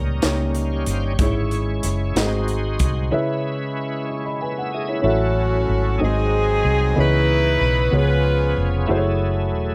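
Solemn and soulful, this slow gospel excerpt moves at 62 BPM in a straight 6/8 feel in C# minor. A dark, woody upright piano and a bright, shouting tonewheel organ with key click, light overdrive, chorus vibrato and slow rotary speaker carry the harmony over a round, foam-muted electric bass, while a crisp acoustic drum kit with a high-tuned snare and punchy kick plays only from 0.2 to 2.9 seconds, just as the organ adds a fill. After a break, a tight, clear saxophone section enters at 5.1 seconds with a vibrato-laden jazz-style melody up front, moving through chords from A6 and G#7 to C#m9 and F#m9 in a small, lightly reverberant room.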